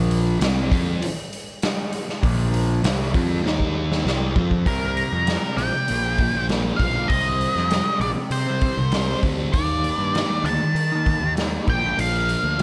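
A small-room sound opens this hypnotic, mysterious psychedelic rock excerpt at 98 BPM in C dorian, where a thick, double-tracked fuzz guitar riff with phaser and an overdriven picked bass carry the low end from the start beside a gritty, saturated, punchy, up-front garage drum kit with a medium-tuned snare and a rolled-off top. A drum fill at 3.4 seconds leads into the second section at 4.7 seconds, where an octave-fuzz lead guitar enters up front with wah and slapback echo, singing over chords that move from C5 through Cm and Ebmaj7(no3) to Bb.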